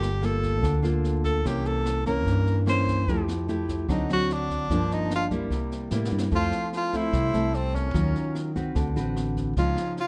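Bossa nova with a romantic, relaxed mood, heard as a short cut from a longer piece. A breathy tenor saxophone carries the melody up front, soloing in a jazz style with subtone, light vibrato and scooped notes. A fingerpicked nylon-string guitar, also up front, supplies the accompaniment with audible finger squeak. Beneath them, a fingered electric bass sits warm and direct, while a brush kit in a small room adds a boomy kick, rim click and high-tuned snare. A drum fill at 5.9 seconds leads into a new section at 6.3 seconds, where a distant, straight-toned jazz flute enters in the background as a second line. Rich chords such as Gm9, C7b9 and Ebm9 pass under a dark, lightly reverberant production.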